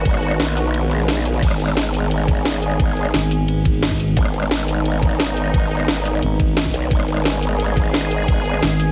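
Dark technical drum and bass in G# minor at 175 BPM, aggressive and futuristic, built on a single G#m chord: a knocking layered electronic kick that drops out from 0.7 to 1.4 s while a faint electronic swell sounds in the background, a kit with a cracking snare, bright hats, crash, ride and rim clicks pushed through overdrive, a saturated, wobbling, formant-filtered growl bass with chorus, a thick FM growl bass that first enters at 3.1 s, and an evolving detuned sawtooth pad with chorus and sidechain pumping, all set in a digital ambience with a heavily compressed, radio-like sound.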